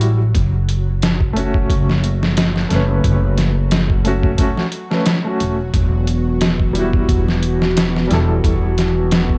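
A gritty, pitched-down sampler drum kit with a thumpy kick sits up front beside a woody, growly pizzicato upright bass in this smoky, hypnotic trip hop excerpt, while a soft felt-muted upright piano with audible action noise, tremolo and tape echo plays accompaniment over a very quiet, nasal bowed-like drone, and a warbling, nostalgic tape-like pad joins at 5.7 s as the harmony moves from F#m to Emadd9, all with the dry, lo-fi character of a home cassette recording.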